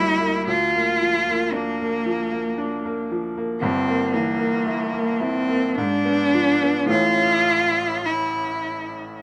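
Set in a dark production with light reverb, this brief fragment of an elegiac, melancholic romantic classical duo moves in a rubato 3/4 at 52-58 BPM, tuned to A4 = 435 Hz, as a single up-front bowed cello sings a focused melody with vibrato between Bb3 and F4 over a brilliant, open baby grand piano whose long-sustaining accompaniment passes through Bb/D, Edim/G and G#dim7 before settling on A at 6.9 seconds.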